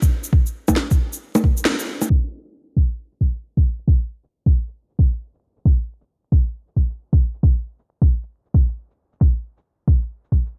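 A swung 4/4 groove at 135 BPM, with the 16ths pushed to 63% swing, drives this rainy, melancholic future garage passage cut from a longer piece. A soft, tape-warmed electronic kick sits up front beside electronic shaker, bongos and a woody snare, both parts re-recorded in a small room for a close, intimate feel. The dry mix is coated in vinyl crackle and dulled by a low-pass filter, and after a band accent at 1.7 seconds, a filter sweep runs from 2.1 seconds to the end as the second section begins.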